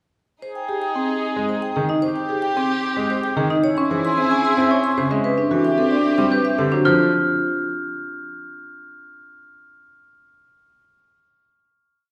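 Minimalist classical pattern music at 112 BPM in 3/4, hypnotic and meditative, in which a ringing vibraphone melody with slow motor vibrato and woody rosewood marimba arpeggios repeat short cells over brilliant baby grand piano accompaniment entering at 1.4 seconds, while a distant oboe second line and a rich chamber violin section hold swelling notes, a bell-like glockenspiel adds high arpeggios from 4.7 seconds, and the whole piece settles onto a final chord at 6.8 seconds in a reverberant recital hall.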